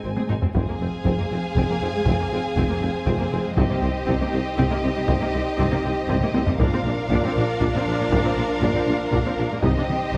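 Epic and dramatic, this cinematic orchestral film-score excerpt moves at 79 BPM in a straight 6/8 in F dorian, its violin section carrying an expressive, smooth-topped melody over a distant second violin line, a focused viola accompaniment, mellow French horns and a bass of woody double basses, bowed cellos and a very quiet tuba. A vintage, band-limited taiko ensemble struck with heavy sticks drives the music from 0.2 seconds, with fills at the start and around 6.2 seconds, while a background string section adds lush sustained chords from 0.6 seconds and round, calf-headed timpani sound briefly at 3.6 seconds. The harmony moves from Ab through Fm, Cm and Bb, all in a moderate concert hall reverb.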